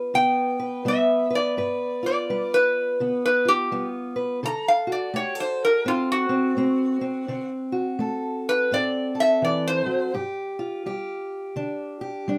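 Rollicking and laid-back, this brief excerpt of acoustic country blues moves at 84 BPM in 4/4 with a swung eighth-note feel, tuned slightly flat of standard pitch. A fingerpicked parlour steel-string guitar on old strings supplies a dark, woody, boxy accompaniment over G7 and D7 chords, while a metal-body resonator slide guitar, played with fingerpicks, carries the melody up front in a bright, metallic, nasal voice until 10.1 seconds. The duo sits in a moderate booth ambience, with the accompaniment landing on a G5 chord at 10.1 seconds and ringing on to the cut.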